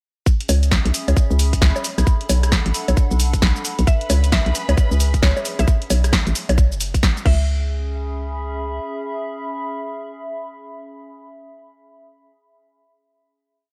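A dry, up-front mix opens on a bouncy, moody two-step UK garage groove at 133 BPM in C# phrygian, where a tight four-on-the-floor kick and a punchy analog drum machine with skipping swung hats, rims, bongos and cabasa drive a hollow, knocking FM bass in a dotted rhythm under a warbling, nostalgic lo-fi pad with chorus and sidechain pumping, while a woody mallet-like pluck with dub echo repeats its riff from 3.9 seconds, a dark violin section holds a high note with vibrato from 3.9 to 5.7 seconds, and the drums stop at 7.4 seconds, leaving the bass to drop out at 8.8 seconds and the pad and pluck on a final C#m chord.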